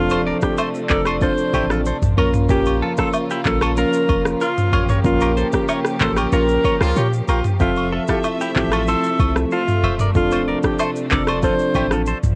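This romantic, joyful afrobeats fragment opens at once on a close-miked alto saxophone singing a forceful, vibrato-laced pop melody. Beneath it sit round, dark electric-piano-like synth keys with chorus and a filter sweep, a lush, woody string section bowing sustained chords in the background, and a deep sine sub bass with a pitch-drop attack. At a steady 94 BPM in 4/4, a clean, twangy, direct-recorded electric guitar picks a compressed riff through phaser and tape echo. An electronic, overdriven afro-pop kit with a deep kick, handclaps, rim click, shaker and toms, given cassette-tape grit, drives the groove alongside agogo bells and woodblock that add a tube-shaker, group-handclap character. The band hits an accent from 5.0 s, and a loose horn section with light vibrato adds a brief second line from 6.3 to 7.0 s, while the harmony moves from Dm7 through Bbm and Fmaj7 before returning to Dm7. 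Light reverb and a homespun cassette sound give the whole a cozy, lo-fi glow.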